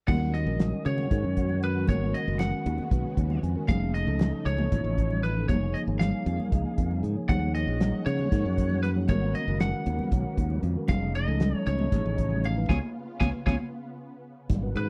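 Driving 7/8 at 233 BPM, this nocturnal, funky electric jazz fusion excerpt in G# dorian sets a fat-snared, damped 1970s drum kit and a growly, up-front fingered bass under high-tuned congas in the background, while a twangy, slightly broken-up lead guitar with slapback echo carries the melody over mellow tine electric piano (with a fill at 2.9 s) and a silky, chorused analog string pad, all in a dry, close studio sound that ends on a band accent from 12.7 s.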